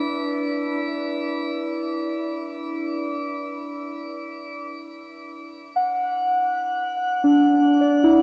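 Ambient music in free time, this brief excerpt cut from a longer piece feels weightless and serene. A single part carries it: muted, felt-like synth keys playing solo from 0.0 to 8.2 seconds, ranging from D4 to F#5 over a D69 chord. The keys sound soft and intimate with a warbling, vintage character, built from triangle and sawtooth tones with a noise layer, each note striking with a fast attack before decaying. Chorus and a diffuse ambient delay color the keys, which sit dark and up front in the mix. A wet shimmer reverb with an 8.1-second tail surrounds everything in a dusky, warm production tuned to A4 = 435 Hz.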